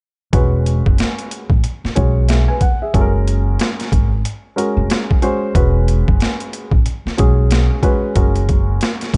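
Warm yet cool, this short jazz-hop cut from a longer hip hop piece rides a swung 92 BPM groove in E major from 0.3 to 9.2 seconds, pairing a gritty, overdriven boom bap sampler-style kit (compressed, pitched down and carrying a large-room sound, with a thumpy kick, a high-tuned snare and hi-hat) and a woody pizzicato upright bass on steel strings, both up front, with a mellow, worn, intimate grand piano whose action noise is audible as it moves between Eadd9 and F#add9 chords in a dark studio production.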